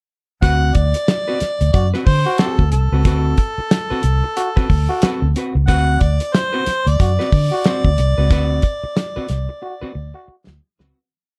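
Energetic, playful funk at 91 BPM in D mixolydian with a swung sixteenth feel. An up-front, dry 70s drum kit with a fat snare and tight kick lays down a syncopated groove with ghost notes, and a round, foam-muted vintage fingered electric bass plays a syncopated riff anchored on the downbeat, with muted ghost notes and chromatic approach notes. Beneath them, a clean hollow-body jazz guitar scratches out sixteenth-note funk rhythm, while a mellow, distant harmonica carries the motif-based melody in call phrases. From 1.7 seconds, a raspy, gritty growling trombone adds short jazz stabs as a second line. The whole piece sits in a dark production with light reverb and lossy compression artefacts, fading out from 8.3 seconds as a drum fill arrives at 9.6 seconds.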